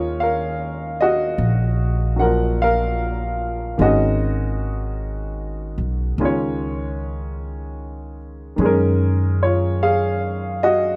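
A slow 50 BPM swing in 4/4 sets a smoky, wistful jazz ballad mood in Eb minor, drifting through Ebm7, Abm7 and Db before settling on Gbmaj9. A clear upright piano carries the accompaniment up front, while a pizzicato upright bass with steel strings adds a woody, growly, bright low end close beside it. Light reverb and a rough home demo mix give this short cut from a longer piece an intimate, unpolished feel across its 11 seconds.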